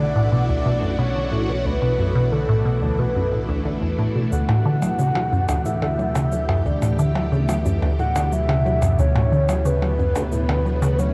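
Ambient, sequencer-driven space music at 90 BPM in 4/4 with a straight feel, this D major passage is cut from a longer piece and feels expansive and luminous. A juicy, squelchy resonant blip pluck sits up front with a low riff, its filtered square and sawtooth tones treated with phaser and delay, while a round sine sub bass anchors the bottom. Above, a vintage string machine holds swirling, bright sustained chords through ensemble chorus and phaser, and a soft, octave-layered synth lead sings a mellow, detuned melody with vibrato, chorus and delay. At 4.3 s the harmony moves from Bm to Dsus2, and cabasa with electronic percussion blips enters, sounding tape-treated and echoed by delay. A huge ambient reverb with a 7.3-second tail and a dark, warm production wrap the whole texture in deep space.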